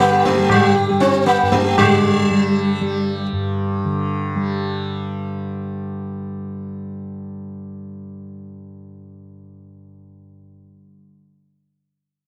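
Solemn and meditative, this brief Hindustani classical fragment at 118 BPM in 3/4 sets an up-front, plectrum-plucked sitar melody, buzzing and shimmering with sympathetic strings, over a softly plucked, warm tanpura drone that carries on after the sitar stops at 3.3 seconds, while a high-tuned tabla with a short ring sounds distant, as if in a large room, from 0.2 to 2.0 seconds, all captured in a dry, close 1970s-style studio sound.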